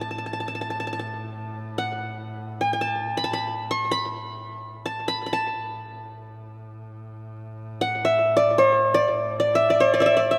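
Festive and stately, this fragment of an Arabic maqam piece in free time features a plectrum-plucked qanun carrying the melody up front, its bright-edged triple strings ranging from C5+50c to C6+50c under a slapback echo. Beneath it, one bowed double bass holds a focused, close drone on A2 with vibrato, sitting far lower in the mix, and both parts run the full 10.4 seconds in maqam rast on A, tuned to A4 = 441 Hz. A lush hall reverb with a 2.8-second decay surrounds the rough home-demo sound, where a faint mains hum can be heard.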